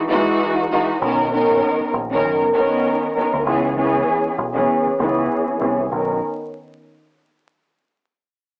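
Soulful and nostalgic, this boom-bap hip-hop excerpt opens on a lush, bowed string section with vibrato and portamento, filtered and cassette-treated, and a filter sweep runs across the strings once a deep, round picked electric bass enters at 1.0 s. The chords move from Emaj9 to Bmaj9 and C#m7 over a swung 4/4 feel, with the bass sitting dark and low beneath the strings. Light reverb, vinyl crackle and a small-speaker, home-cassette sound give the whole piece a worn, intimate character.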